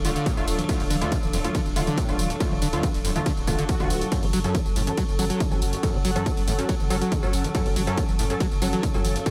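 An overdriven, heavy electronic kick entering at 0.3 s drives this relentless, intense peak-time techno excerpt at 140 BPM in F# harmonic minor, where a round sine sub bass, a squelchy, gritty acid bass riff in the background, bright, aggressive detuned rave stabs with chorus and reverb, a layered drum kit of hi-hat, ride cymbal, tambourine and toms, an airy, breathy pad, a swarming, tense drone and a brief electronic swell at 3.4 s share an echo-heavy mix, the basses, stabs, pad and drone pumping to the sidechain, as the harmony moves from Dm to F#m at 4.1 s.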